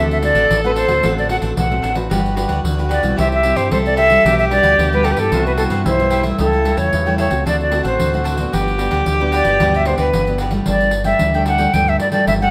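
A crisp picked cavaquinho, a fingerpicked nylon-string guitar with audible finger squeak, and a direct electric bass underneath lay down a straight, lively samba-and-choro pulse, with a jingly pandeiro joining a moment later. An airy, up-front concert flute carries the joyful melody with vibrato and a soft attack, while a breathy, distant tenor saxophone adds a mellow subtone second line until 10.4 seconds. Light reverb frames this excerpt from a longer piece, whose harmony moves from D7 through Gmaj7 and reaches Gsus2 at 10.7 seconds.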